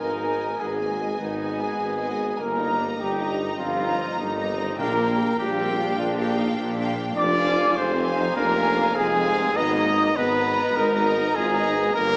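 Heard through a small speaker, this heroic, adventurous cinematic passage sits in a wet scoring-stage reverb, and it is cut from a longer piece. A violin section with a smooth top carries the melody in a flowing 12/8, while a dark, woody second violin section and a very quiet, airy flute group with lifted highs trace second lines around it. A lush viola section adds rich, even accompaniment, and punchy French horns hold sustained chords in the background. A mellow solo trumpet stands up front with stabs. The bass is built from a mellow tuba, an expressive, close cello section and a soft-attacked double bass section. Timpani with hard mallets land briefly at 4.8 seconds, very quiet and dry, as the harmony moves through Abmadd9, Eb/G, Bb6 and Fm before returning to Abmadd9.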